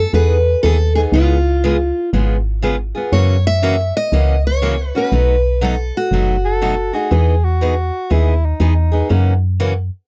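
Charming and playful, this acoustic string swing excerpt in E major moves at 120 BPM with a lilting swung feel, as a bright, picked steel-string guitar carries the melody with finger squeak and a touch of tape echo until 6.9 seconds, over a second picked guitar's accompaniment and a woody, round FM bass with a dark, decaying tone up front. A mellow soprano saxophone with vibrato and scooped notes enters at 6.4 seconds for a smooth second line. The dry, close 1970s-style studio sound keeps the guitars and bass intimate as the chords cycle from Emaj7 through C#7, F#6 and B7.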